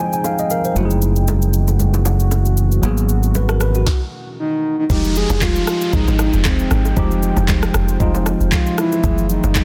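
A swung 116 BPM groove in 4/4 drives this hypnotic, late-night amapiano excerpt, with an electronic afro-pop drum kit up front: a knocking kick, sharp snare, handclaps, rim click and shaker, plus very quiet, ringing acoustic bongos and congas sitting close behind. A worn, slightly out-of-tune tine electric piano opens with a short fill and then plays clean, direct accompaniment over minor-ninth chords moving from Fm9 through Gbm9 and Abm9, while a deep, moody sawtooth pad sustains those chords underneath with chorus, its own reverb and a pumping sidechain. A bright, growly fingered electric bass carries the low end from 0.8 seconds, and the arrangement drops to a brief stop at 3.9 seconds. At 4.9 seconds the second section arrives: a round, percussive log drum bass with a dark, decaying FM tone takes over the bottom, an electronic downlifter sweeps in, and a soft, breathy flute-like synth lead that entered just before sings a sustained melody with vibrato, chorus and delay. 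The mix is dry and dense, with a heavily limited modern master that keeps the drums and basses forward.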